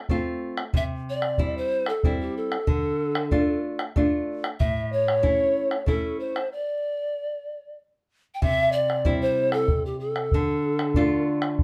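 A moderately roomy live studio sound frames this melancholic yet festive Andean folk excerpt in 3/4, where a fingerpicked nylon-string guitar with audible finger squeak and a round bombo carry the accompaniment up front, while a pure, wood-toned pan flute with crisp, chiffy attacks and expressive vibrato carries the melody from 0.8 s, before the band halts at 6.5 s and resumes at 8.4 s.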